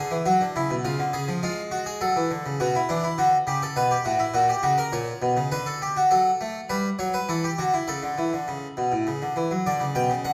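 Set in a moderate recital-hall reverb, this short passage from a longer baroque-style two-part invention in B minor features a solo French-style harpsichord, full-bodied and up front on two sets of plucked strings, moving at 102 BPM in a straight 3/4 with a driving yet contemplative mood before shifting into a new section at 6.1 seconds and settling on D at 9.7 seconds.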